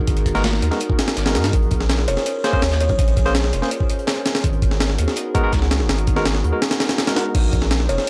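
A gritty, pitched-up jungle sampler kit sits up front with a thumpy kick, medium-tuned snare, hi-hat and crash, driving this raw, frenetic drum and bass cut at 165 BPM in Bb phrygian, while a very quiet, high-tuned funk kit adds hi-hat and snare beneath it. A deep, saturated sub bass holds sustained low notes up front, and a bright, barky tine electric piano plays stabs through dub echo over chords moving between Abm9 and Bbm9. In the background a warbling, lo-fi pad sustains chords with chorus and reverb, and a buzzing, woody kalimba plucks a Db5 with dub echo at 2.1 s and again at 7.9 s, in a dry hardware recording with a small-room sound.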